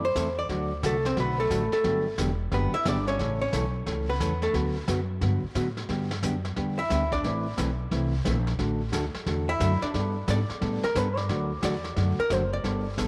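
A dark, fingered hollow-body jazz guitar solos throughout this playful, down-home western swing excerpt, while a clean, compressed archtop guitar sits up front with a picked second line that drops out at 4.5 seconds, reappears briefly around 7 seconds, and returns at 9.5 seconds, a woody pizzicato upright bass anchors the low end, and a vintage brush drum kit with a punchy kick and rolled-off top comes in at 0.2 seconds, with a wet spring reverb adding a lingering glow to the swung groove.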